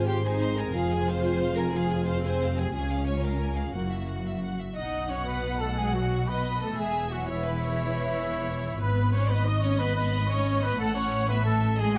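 The rhythm rolls in a straight 12/8 at 120 BPM counted in dotted quarters, driving this heroic, adventurous stretch of cinematic film score taken from a longer piece. Lush bowed strings carry it throughout: a rich, smooth violin section sings the melody, while a warmer second violin line and a focused viola section fill the middle with vibrato. Underneath, a close, rich cello section and a woody double bass section anchor the bass, and a mellow French horn section holds sustained chords over the opening progression until about 4.6 s. At 4.8 s the music settles into B mixolydian, and an airy flute ensemble joins in the background with a second line as a clear, vintage-toned trumpet section punctuates with tight stabs. Close, detailed microphones and a light reverb keep the orchestra intimate yet full.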